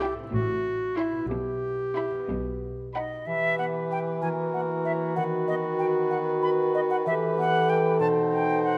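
Moving in 6/8 at 63 BPM, counted in dotted quarters, this playful, whimsical film cue in E minor has a sneaky, mischievous air. Distant, lush violin sections in the background open it with the melody and a second line. Close, focused violas carry the accompaniment, while intense cellos and a double bass section with a smooth top bow the bass. A ringing, fingerpicked concert harp spins arpeggios, and an up-front clarinet adds a clear second line throughout. Just before the strings fall away, an airy, bright flute with a soft attack takes up its own close-miked line. A mellow cor anglais and a roomy bassoon in the accompaniment join it at 3.3 seconds, and a tight French horn section holding sustained chords follows at 4.2 seconds. The harmony moves from Am through F#7/E and B/D# to close on B7b9, bathed in a moderate scoring stage reverb, and the cue is cut from a longer piece.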